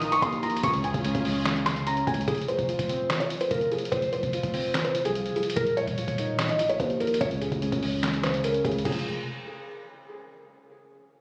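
A half-time trap groove at 146 BPM in 4/4 drives this dark, melancholic hip hop excerpt in F minor, cut from a longer piece. The lo-fi sampler-style drum kit brings a thumpy, muffled kick, a medium-tuned snare, handclaps, hi-hat and crash cymbal, all compressed, pitched down and roughened with vintage 12-bit sampler grit. Beneath it, a growling, buzzy 808-style bass with a fast attack and decaying tail holds the low end from Eb1 to Eb2. Up front, a felt-muted upright piano carries the melody with a soft, intimate tone, thick felt and audible action noise, its line echoed by delay. A boxy concert grand with deep bass supports it in the middle register, while a distant, woody symphonic string section sustains lush, bowed chords in the background only until 2.3 seconds. The harmony moves from Ebsus2 to Db and then through F and Db power chords. The whole is bathed in studio reverb and sounds as if captured on a phone in the room, its top end cut off above 10.7 kHz.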